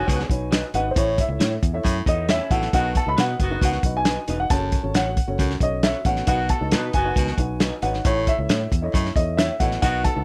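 Uptempo 1960s-style soul at 135 BPM, driving and passionate, this excerpt puts a dark baby grand piano on the melody, intimate with audible action noise, over a muffled, up-front drum kit with a tight kick and a punchy, foam-muted fingered bass, while a bright baritone saxophone with light vibrato plays a riff and a distant, roomy horn section carries a second line. A woody, boxy upright piano sits in the background as accompaniment, and an electric guitar through a small old amp adds slightly broken-up stabs from 0.5 s, joined by a second, compressed guitar riff between 2.1 and 2.9 s. The chords move through B, A and F#m under light reverb.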